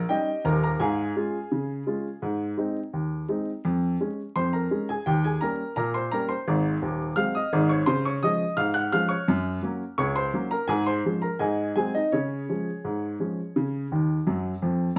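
In a straight 2/4 at 85 BPM, this cheerful, jaunty ragtime piece in Db major features a lone upright piano, woody and short in sustain, ranging from Eb1 to Gb6 and sitting up front. The harmony opens on Eb7 and circles through Ab, Gb and Ab7 before settling on Db at 12.1 seconds, with a piano fill from 13.9 seconds closing this cut from a longer piece. The recording carries a wet studio ambience, heard from further back in the room, along with a layer of vinyl crackle.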